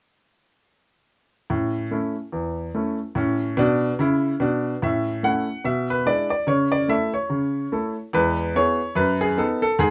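Stride jazz with an exuberant, swinging feel, played by a single baby grand piano heard from 1.5 seconds to 9.9 seconds in this short cut from a longer piece. The piano sits up front with a clear, natural tone and short sustain, ranging from deep bass notes up into the upper middle of the keyboard. A moderate club reverb gives the sound a lively room around it, and the passage moves into a new section at 4.8 seconds.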